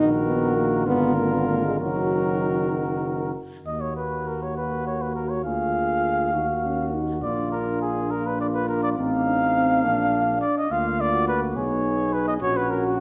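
A mellow trumpet with light vibrato carries the melody up front in this stately, warm classical brass quintet excerpt in a rubato 6/8, joined by a smooth flugelhorn second line, a French horn with vibrato and a background euphonium as accompaniment, and a mellow tuba bass, all five playing throughout the 13.0 seconds in a reverberant recital hall.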